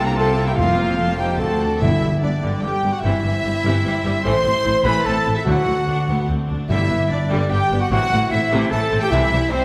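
Heroic adventure film score in a soaring, cinematic vein, moving at 148 BPM in a straight 3/4 in G major, cut from a longer piece. A lush symphonic violin section carries the melody from the background, its vibrato smooth and even, while a concert flute with a pure, expressive tone and soft attack plays a second line alongside a focused studio violin section and a mellow, roomy clarinet. A dark, close-miked cor anglais adds a brief second line only until 1.8 s, where the music shifts from a short opening passage into a broader progression built on G, C/G, Am and D. Beneath, a distant viola section fills in the accompaniment, a very quiet fingerpicked harp rings out arpeggios, and cello and woody double bass sections anchor the low end, while a distant French horn section holds sustained chords from 0.1 s. Dry timpani struck with medium mallets sit in the background in two bursts, first at 0.6 s and again at 5.5 s, all set in a wet scoring-stage reverb that lends the ensemble a grand, heroic sweep.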